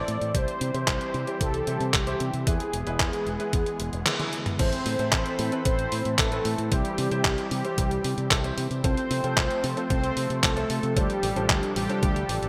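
A straight 4/4 groove at 113 BPM drives this danceable, bittersweet italo disco piece in A minor. A thumpy electronic kick pairs with an up-front, detuned 8-bit drum machine playing hi-hat, handclaps, toms and crash cymbal; both are tape-tinged and re-recorded in a small room, and the machine's hits carry gated reverb. A bright fingered electric bass with an envelope filter sits beneath a mellow synth brass lead, whose round, dark, detuned sawtooth tone is shaded by ring modulation, a filter sweep, chorus, delay and shimmer reverb. In the background, a warbling vintage analog pad holds slow-attack chords with chorus and shimmer reverb, while a clear, worn concert grand piano adds short stabs with its own shimmer reverb. A drum fill and band accent at 4.1 seconds lead into Amadd9 at 4.6 seconds, after which the harmony moves through C, F/C and Dm7, all within a 1980s-style digital production bathed in moderate plate reverb.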